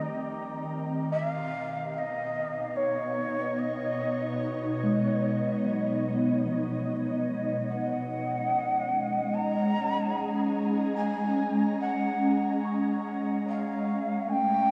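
Luminous and serene, this ambient passage drifts at 73 BPM in a straight 4/4, cut from a longer piece. An ethereal, airy pad sits up front with full-bodied sustained chords that bloom on a slow attack and linger through a long release, colored by ensemble chorus, its own reverb and a phaser. Over it, a breathy, bamboo-toned shakuhachi carries the melody between C#5 and Bb5, its chiff and vibrato lending an expressive voice, with a diffuse ambient delay trailing each phrase. In the background, muted, felt-like synth keys spin dark, intimate arpeggios with chorus and delay, fading out across the full 14.7 seconds. The harmony moves from Eb to Badd9 at 1.1 seconds and on to Gbadd9 at 7.7 seconds, all bathed in a huge, dreamy reverb and a cassette-tape haze.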